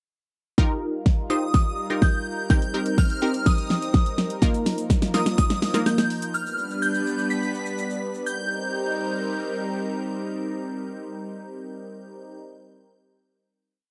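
Driving and confident, this short dance-pop piece in C minor at 125 BPM sets a punchy four-on-the-floor electronic drum kit with a fat snare and a drum fill up front, beneath syncopated close-voiced chords from a bright, detuned sawtooth unison pluck and sustained chords from a thick, lush pad, both with phaser and sidechain pumping and the pad also carrying chorus, while a shimmering, dreamy FM bell enters at 1.3 seconds with high hook phrases through ensemble chorus, phaser and slapback echo, a grainy egg shaker sits in the background from 4.4 seconds, and the chords move from Ebadd9 through Cm7, Bbsus4 and G to a final held Cm7 at 8.3 seconds, all in a dry, close 1970s-style studio sound with light reverb.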